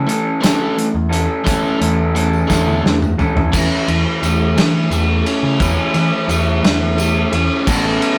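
Indie rock in 6/8 at 58 BPM counted in dotted quarters, this upbeat, carefree excerpt is cut from a longer piece and opens on an A/E chord. A biting overdriven guitar and a second, dark, slightly broken-up electric guitar through a small old amp play riffs together from the start, with the lo-fi second guitar sitting higher in range. Underneath, a growling, round picked electric bass with overdrive sits up front beside a loose indie drum kit. The kit has a punchy kick, a medium-tuned snare, dark cymbals and a pumping room sound, and it plays a drum fill from 2.5 to 3.5 seconds. A jingly tambourine sits in the background. At 3.5 seconds a vintage, mellow combo organ enters very quietly with clean sustained chords, and the excerpt closes on an Aadd9, all in a rough rehearsal-room recording with moderate reverb.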